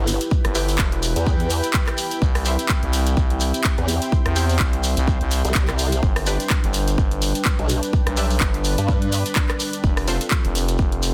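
Bass house with a bouncy, aggressive swing, built on a punchy, up-front electronic kick and a layered house kit of handclaps, rim clicks and warm hats, with a grainy shekere tucked in the background. Two up-front basses drive it: a growling, overdriven FM bass and a detuned, wobbling formant-sweep bass that drops out at 9.2 seconds, both with sidechain pumping. Above them, bright orchestra-hit-like synth stabs with reverb and delay cut through a moody, nasal analog pad and a blurred granular cloud pad over an Em, C, G and F progression, all pressed into a dense, heavily limited mix.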